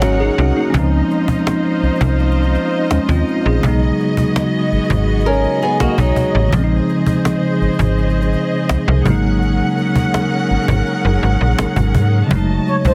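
A heavily compressed, radio-style sound with light reverb frames this dreamy, smooth contemporary R&B excerpt in Db major, moving at 83 BPM in a straight 4/4. A bell-like tine electric piano and a snappy, metallic slap-like FM bass sit up front over a close, snappy cajon with snares and an intimate bowed string section playing soft, sul tasto sustained chords with vibrato, while a fingerpicked flamenco guitar adds delayed arpeggios in brief spots, including 5.3 to 6.5 seconds. Chords such as Dbmaj9, Cb6 and a rootless Bbm11 drift by before a round, horn-like synth lead with chorus and a filter sweep enters just at 12.7 seconds.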